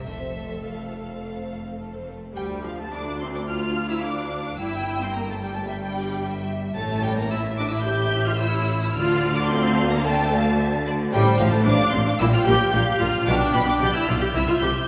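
Cheerful and lively, this quick classical-period movement for string orchestra moves at 110 BPM in D minor with a rubato feel, as a warm, smooth-topped violin section carries the melody high above a rich second violin line, rich violas, clear cellos sitting in the background and clear double basses, all bowed with vibrato and heard from further back on a reverberant scoring stage, in a short cut from a longer piece that shifts into a new section at 2.4 seconds.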